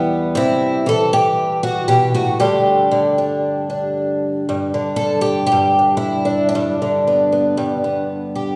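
A straight, steady 4/4 pulse carries this gentle folk fragment, cut from a longer piece, played entirely by a picked twelve-string acoustic guitar whose woody, shimmering octave-doubled tone has the boxy character of old strings on an archtop. The guitar sits up front as it moves from C to Gsus2 and settles on G at 4.5 seconds, with a wet scoring-stage reverb and studio ambience lending a warm, spacious glow.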